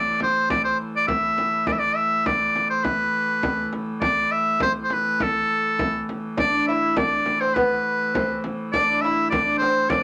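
Ancient and driving, this short excerpt of a medieval dance in A minor moves at 102 BPM in a straight 2/4, with a bright, folk-style shawm carrying the melody up front while a rich, nasal hurdy-gurdy holds a distant, reedy drone beneath it. A deep, large frame drum played with hard hands sounds close and dry from 0.2 seconds, and at 6.4 seconds a delicate, fingerpicked lute with gut double strings adds a second line. The whole sits in a moderate small room.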